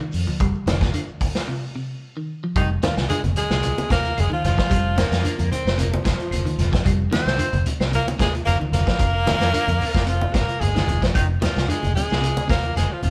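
Driving and funky, this afrobeat excerpt moves at 112 BPM in a straight 4/4, sitting in F dorian with the band playing live together in one room under moderate studio reverb. A vintage drum kit sits up front with a punchy kick, a medium-tuned snare and hi-hat, its saturated, gritty sound rolled off at the top, while a round, fingered electric bass anchors the low end. Around them, a grainy, close shekere and woody claves add very quiet percussion, with bright, low-tuned congas in the background, and a twangy, slightly broken-up electric guitar picks arpeggios from the opening moment. After a break from 1.5 to 2.6 seconds, the horns arrive: a breathy, edgy alto saxophone carries the melody with scooped notes, shadowed by a raspy, close-miked tenor saxophone with vibrato on a second line. A raspy baritone saxophone, bright with a smooth top, briefly joins that second line from 5.0 to 7.0 seconds, thickening the gritty horn section.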